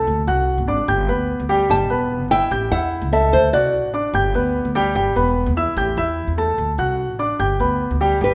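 This sunny, danceable passage of Cuban son and guajira in G major at 148 BPM, cut from a longer piece, opens with a warm grand piano playing arpeggios over a dark, woody, thumpy pizzicato upright bass on gut strings, both sitting up front. At 1.7 s a small, thumb-plucked acoustic nylon-string guitar takes the melody until 3.9 s and returns briefly at 8.2 s. A moderate large-studio reverb surrounds the close parts as the harmony cycles through D7, G and A5.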